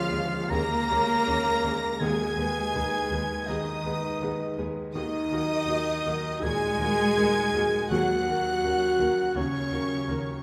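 Cinematic, emotional film score in Eb minor at 82 BPM with a rubato feel, its longing, moving mood carried by a clear violin section singing the high melody over a rich second violin section, a warm distant oboe, an airy, hollow small flute group and a background clarinet with a soft attack. A felt-muted upright piano adds intimate, vintage accompaniment alongside a very quiet, lush viola section, while a mellow French horn section sustains chords and rich cello and double bass sections, the basses sliding with portamento, anchor the low end. Close, dry timpani struck with hard mallets sound in the first 3.1 seconds and again between 7.9 and 9.0 seconds, all set in a church or concert hall with a wet reverb in this short excerpt from a longer piece.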